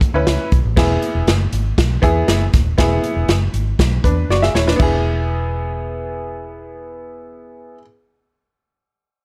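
Light reverb and studio ambience frame this short cut from an uptempo 1960s-style soul piece, moving at 119 BPM in a straight 4/4 in E mixolydian with a danceable, joyful mood. A swinging big-band drum kit sits up front with an airy, polished hall quality, dark cymbals, a medium-tuned snare and a punchy kick, working through crash, hi-hat, kick and snare. A bright upright piano carries the accompaniment with a worn, woody, intimate, slightly detuned tone and audible action noise. Beneath it, a vintage fingered electric bass plays low and round, foam-muted and amped. The harmony moves from a rootless A chord to E. A drum fill arrives at 4.3 seconds just before the kit drops out at 4.9 seconds, leaving piano and bass to carry the second section until 7.8 seconds.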